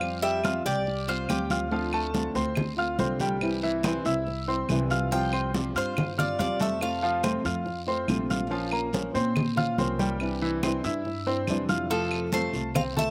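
Dry with little reverb, this relaxed, danceable excerpt of Cuban son and guajira at 141 BPM in F major sets a clear, up-front baby grand piano playing arpeggios with slapback echo over a dark, thumb-plucked flamenco guitar, a growly pizzicato upright bass, bright hard-handed congas, woody claves and a raspy guiro, while a metallic, double-strung Cuban tres picks out short melodic phrases that enter at 0.0, 5.1 and 11.9 seconds.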